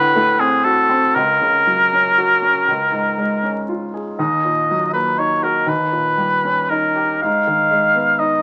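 Serene and lyrical, this brief romantic classical duo moves in a flexible, rubato 6/8 as a close-miked oboe sings the melody up front with clear vibrato over the present, polished accompaniment of a baby grand piano, all heard through a moderate studio reverb and the crackle of a very old 78 rpm record, cut from a longer piece.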